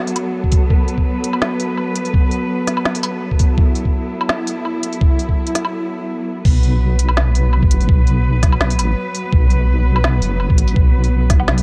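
Heavy and dark, this short cut from a longer half-time drum and bass track moves with a slight swing. A muted cello section holds veiled, bowed chords with light vibrato throughout, pumping under sidechain compression, while a grainy, flickering texture sits in the background with its own reverb until 5.7 s. An organic electronic kit with a woody snare, smooth hats, crash and woodblock runs alongside a gritty, thumpy, pitched-down kick placed up front. After a build-up and a brief break, the drop arrives at 6.5 s, where a deep, detuned wobble bass with chorus enters and holds the low end. The production is dark and close, with little reverb.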